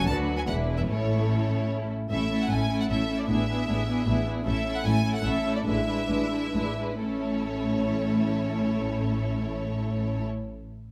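Cheerful and lively, this brief excerpt from a quick classical-period movement for string orchestra moves in 3/4 in A major, with a rubato feel and a tempo ranging from 122 to 155 BPM that slows between 3.9 and 7.0 seconds. A focused violin section carries the melody high above, while a second, more distant violin section sings a lush line beneath it. Dark violas with expressive vibrato and portamento fill out the accompaniment, sitting forward in the blend. Cellos with a soft attack hold the bass in the background, joined by a double bass section whose bowed tone sounds rich and distant. The harmony turns from Bm/D through E7 to A and settles back on A at 7.0 seconds, all captured by close, detailed microphones with light reverb.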